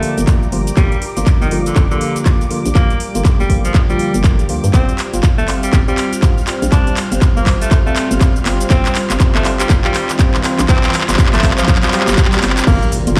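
Vinyl crackle and a large studio reverb frame this moody, hypnotic deep house cut, which sounds as if it were played on a big sound system in a bare room. A punchy, up-front electronic kick and a tape-warm house kit with metallic hats, cabasa, handclaps and crash cymbal drive a swung 4/4 groove, while a hollow, bouncy FM bass pumps with sidechain from the kick. A dark, organ-like percussive stab with chorus and digital delay also pumps, and a filter sweep on it carries a build-up and drum fill through the passage over a Gm7 chord. A clear, forceful tenor saxophone plays a vintage-toned, jazz-style solo melody with vibrato and delay, over a smooth, detuned analog pad, an airy, breathy pad and a silky string machine, the last three sitting very quietly in the background. A faint electronic riser enters at 7.0 seconds and lands on an impact at 12.7 seconds, in this section cut from a longer piece.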